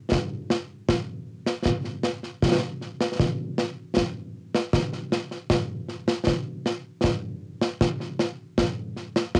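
Concert snare drum and concert bass drum play from 0.1 to 9.4 seconds in this short, proud and ceremonial Scottish traditional fragment cut from a longer piece, moving at a straight 78 BPM in 2/4, with the acoustic drums sitting close, dry and up front beside dark cymbals, carrying a cassette tape character from a home recording on cassette with light reverb.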